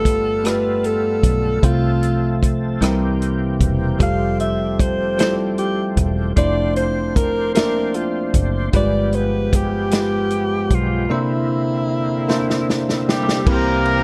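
Slow gospel in 6/8 at 51 BPM in F major, jubilant and uplifting, with a clear, close-miked alto saxophone carrying the melody over bell-like tine electric piano, a gritty overdriven tonewheel organ holding sustained chords through a slow rotary speaker with chorus vibrato and key click, and a punchy, foam-muted fingered electric bass. A soul drum kit with dark cymbals, a tight kick and a medium-tuned snare drives the groove and plays a fill from 12.3 to 13.5 seconds, during which a loose horn section with octave doubling takes over the melody at 13.1 seconds. The chords move from G9 through Fmaj9, Bbmaj9#11/F and G7b9 to C9 and C7, under a dark production with light reverb and studio ambience, cut from a longer piece.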